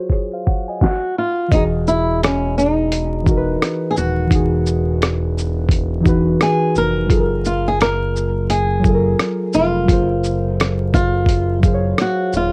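Cosy and mellow, this lo-fi hip hop excerpt sits at 86 BPM in E major, with a gentle swing on the sixteenths. Muted, felt-like synth keys open the piece under a filter sweep, their soft, decaying tone thickened with chorus, while a compressed, pitched-down sampler-style drum kit follows almost at once with a thumpy kick, medium-tuned snare, rim click, hi-hat and shaker. A dark, fingerpicked flamenco guitar carries the melody from 0.8 s, and a smooth gliding synth bass with vibrato and a detuned sawtooth edge joins at 1.5 s as the harmony moves from F#maj9 to Emaj9. The chords return to F#maj9 at 7.1 s, with all four parts held up front in the mix. Light reverb, worn cassette tape warble, pitch drift, vinyl crackle and a low-pass filter give the whole recording a dusty, lived-in haze.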